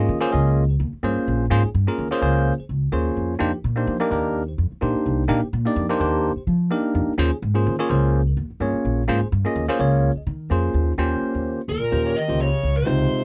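A barky, bell-like tine electric piano with phaser comps alongside a woody, pizzicato upright bass from the start of this funky, driving, swung jazz fragment over suspended chords, the piano adding a brief fill at 2.7 seconds, before a dark, distorted, bluesy lead guitar and a background bass clarinet with light vibrato and scooped notes enter at 11.7 seconds, captured in a dry, close 1970s-style studio sound.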